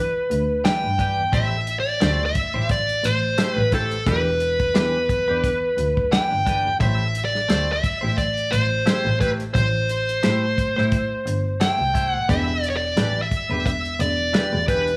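Brooding and soulful, this straight-eighth soul blues excerpt moves between Em7 and Am7, with a dark, overdriven lead guitar carrying the melody up front while a rich, bowed double bass with vibrato sustains smooth, even lines underneath. A dry acoustic soul drum kit with a tight kick, medium-tuned snare and a warm, rolled-off top enters at 0.3 seconds. A bright, twangy clean electric guitar, recorded direct and compressed with a phaser, adds quiet stabs from 0.6 seconds in a nearly reverb-free studio sound.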